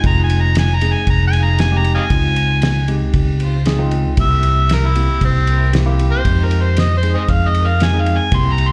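Heard through a club PA in a small, reverberant room, this brooding, smoky soul blues excerpt in F minor moves at 116 BPM with a straight-eighth feel, led by a gritty, overdriven harmonica solo full of vibrato, scooped notes and tongue slaps, with slapback echo on both the harmonica and the clean tine electric piano, while a round, punchy fingered bass sits up front, a cloth-damped drum kit thuds with a fat snare, tight kick and dark ride, and an earthy chamber string section holds bowed chords in the background over Fm7, Dbmaj7 and C7.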